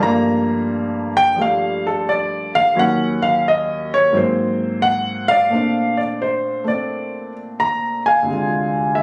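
A warm concert grand piano opens this short solo jazz passage, cut from a longer piece, alone and up front, with a playful mood. It swings at 87 BPM in 4/4, centred on Bb major, moving through rich chords such as Gm9, Ebm7 and Ab9 before settling on Bbmaj9 at 5.5 seconds. The instrument covers a range from D2 up to Bb5, giving it a deep bass beneath intimate, natural tones, and the audible action noise of the keys adds a close, human presence. The sound was captured on a phone in the room, then given light studio reverb. The phrase closes on a Dm7b5 at 8.3 seconds, leaving the music poised mid-thought as the clip ends at 9.0 seconds.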